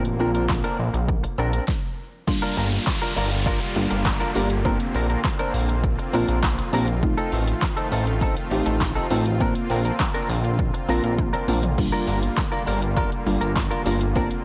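A punchy, overdriven deep house drum kit with a fat snare, handclaps, shaker and toms drives this euphoric, upbeat dance-pop excerpt at 101 BPM in Bb major, pausing in a stop from 1.7 to 2.3 seconds and rolling into a drum fill at 11.2 seconds. A glossy, nasal chorused synth bass sits up front with sidechain pumping, while a twangy, direct-recorded clean electric guitar plays a bright riff through analog chorus over a dark, round pluck accompaniment and a smooth, detuned supersaw holding chords in the background. A downlifter sweeps through from 2.3 to 7.0 seconds over chords moving between Bbadd9, Gm7 and F7/A, all in a blown-out, overdriven mix with light digital ambience.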